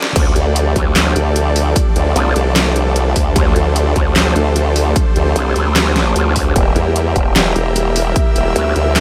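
A dry, close-up sound with a high-passed edge frames this short, heavy and aggressive stretch of wobble dubstep, cut from a longer piece and running at 150 BPM in a half-time 4/4 feel with a slight swing on the sixteenths. It opens on a brief break and drum fill before the drop lands at 0.2 seconds, where the overdriven electronic kick, punchy and layered, joins a dubstep kit of crash, handclaps, hi-hat and a deep snare that sits up front with a small-room character. Two basses dominate the low end: a saturated, growling sine-and-formant bass with a bright chorus edge, and a formant-sweep wobble bass built from sawtooth and sine that enters at 0.4 seconds, both wobbling hard and overdriven. Above them, huge detuned supersaw chords pump against the sidechain, moving from D minor to an E diminished chord at 6.6 seconds. Further back, a soft, breathy pad with a noise layer and slow attack adds an airy, chorused haze that pumps along with the chords.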